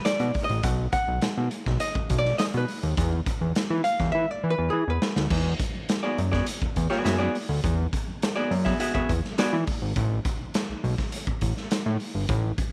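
A straight 4/4 funk groove at 103 BPM drives this gritty piece, with a saturated garage drum kit of punchy kick, medium-tuned snare, hi-hat and crash sitting up front in a bright, pumping stone room. A fat, detuned analog bass with a sawtooth-and-square bite and a fast filter pluck holds the low end, while a dark, clean hollow-body archtop guitar plays a picked solo over the opening chords through 5.3 seconds, with a drum fill entering beneath it at 4.1 seconds. The guitar stops at 9.6 seconds, and a break from 10.0 seconds carries the drums and bass under light small-room reverb.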